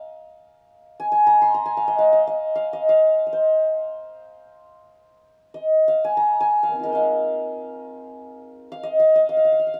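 Close, detailed microphones and a moderate studio reverb give this short Indian classical passage, cut from a longer piece, an intimate yet gently resonant sound. A solo santur sits up front throughout, its bright, hammered strings shimmering and ringing across a span from Bb3 to C6. The mood is solemn and longing, with the opening material heard again from 5.2 seconds.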